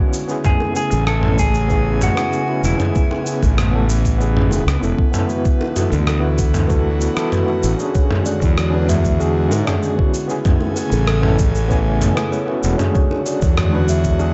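Sunset chillout with a warm, sunny mood, where a dark, clean electric guitar carries the melody until 5.1 seconds over a barky electric piano with medium tremolo and tape echo, a breathy, chorused pad, a gritty, dusty soul sampler-style drum kit with cabasa, rim click and toms, a thumpy electronic kick, faint, distant bongos and an up-front fuzz bass, before a woody, mellow kalimba enters at 5.8 seconds with echoing arpeggios, all in a dark, warm mix with light reverb.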